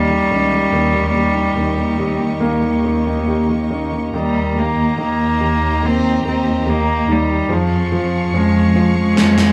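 A small room's moderate reverb gives this short cut from a longer pop ballad the feel of a band playing live together, hopeful and emotional at a slow 71 BPM in a straight 4/4. A bowed solo cello carries the melody up front with a nasal, reedy gut-string tone in a period style, though it sits at a slight distance. Beneath it, a concert grand piano plays clear, intimate accompaniment with audible action noise and long sustain, while a nylon-string guitar picks thumb-plucked arpeggios in the background, finger squeaks and all. A lush studio string section holds sustained chords high above with a focused, smooth top, and a dark, woody chamber cello section supplies the bass close and up front with vibrato. The harmony moves from Eb7 to Eb at 4.1 seconds and to Db/F at 7.5 seconds, and a fat, produced electronic snare bursts in with a drum fill at 9.2 seconds.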